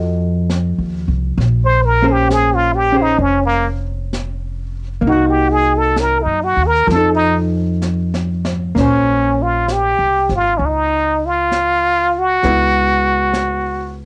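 Recorded at home on cassette with a touch of reverb, this wistful, melancholic jazz ballad fragment swings gently as a clean, dark hollow-body electric guitar comps through shadowed chords like F7b9 and Bbm9 over a woody, thumpy pizzicato upright bass. From 1.6 seconds a brilliant, forceful plunger-muted trumpet takes the solo up front, its wah-wah tone and vibrato close and punchy. Underneath, a soft brush kit with a boomy kick, high-tuned snare and dusky cymbals plays a fill from 7.8 seconds into the second section.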